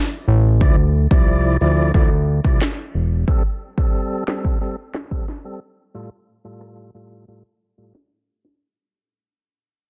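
Dancehall at 90 BPM in D minor with a sultry, bouncy feel, where a fat, saturated analog bass blending sawtooth and square-wave tones sits up front from 0.3 to 3.3 seconds, a lightly overdriven tonewheel organ with fast rotary speaker and sidechain pumping supplies the accompaniment, and an electronic afro-pop kit of deep kick, sharp snare, rim click and handclaps with a tape-warm, small-room character sits up front, the mix shaped by digital ambience, a dense, heavily limited master, a low-pass filter, a filter sweep and a fade-out across the 8.6-second clip as the chords move from Dmadd9 to Am7 and Fadd9/A.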